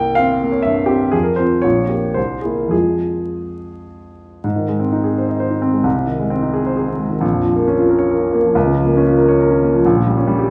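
Set in 3/4 and played with a free, rubato pulse that moves between 101 and 142 BPM, this brief cut from a longer romantic character piece for solo piano feels passionate and brooding. A baby grand carries the whole performance from 0.0 to 10.5 s, ranging from Bb1 up to G5 with a polished, present tone that sits up front. The opening part dwells in F minor, moving through F, a diminished chord over Bb and C7 before settling on F minor. At 4.4 s the music turns to Ab major, then darkens through Bb minor and its inversion over Db before closing on the diminished chord over Bb at 9.8 s. A wet recital-hall reverb surrounds the instrument, and a layer of vinyl crackle lends the sound an aged patina.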